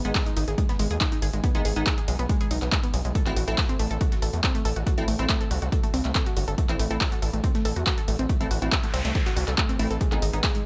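A nasal, saturated sawtooth synth bass pumps up front through this relentless, hypnotic peak-time techno excerpt at 140 BPM, alongside a heavy layered kick re-recorded in a large room, a dry overdriven analog drum machine with handclaps and pumping hi-hats, a very quiet compressed sampler-style kit of hi-hat and snare, a lush detuned unison pluck riff with tube saturation and digital delay, and crisp wavetable chord stabs with dub echo sitting in the background, the harmony moving from G#m to Am at 3.2 s before a background noise sweep enters at 8.8 s.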